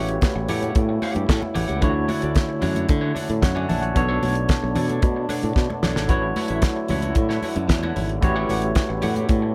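Disco groove, danceable and joyful, cut from a longer piece, where a damped 70s drum kit with a fat snare and tight kick sits up front beside a bright, growly fingered electric bass, while a barky tine electric piano with fast tremolo, a dark, slightly broken-up picked electric guitar, a warm French horn section holding sustained chords with light vibrato, and high-tuned congas struck with hard hands fill out the dry mix over chords from A13 through Dmaj7 and Bm9, with a drum fill at 5.6 seconds.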